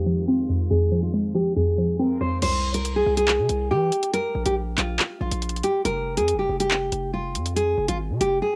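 Hip hop drill in F minor at 140 BPM with a half-time feel, dark and ominous. A full-bodied fingerpicked nylon-string guitar carries the melody through cassette tape and analog delay. A hollow, bouncy square-wave pluck with chorus and distant, biting bowed strings play alongside it under a filter sweep, until both drop out at 2.4 s. At that point a heavy, aggressive distorted 808-style bass enters beneath an overdriven drill kit with bright hats, handclaps and crash, all wrapped in a muffled, low-passed home cassette sound with light reverb.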